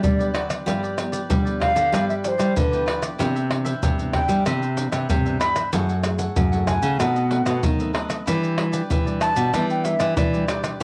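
A straight 4/4 samba-and-choro groove at 95 BPM from a tight surdo, pandeiro, tamborim and maracas, up front with a vintage, band-limited tone, drives this playful, festive fragment of a longer piece, where an airy, unsteady wooden flute with vibrato and a crisp attack carries the melody over a bright, full-bodied fingerpicked nylon-string guitar bass line full of finger squeak, while a darker nylon-string guitar and a warm, picked cavaquinho accompany in the background through chords such as Gmaj7, Cmaj9 and B7b9, the flute, cavaquinho and accompanying guitar carrying a cassette-tape tint within a lightly reverberant home recording.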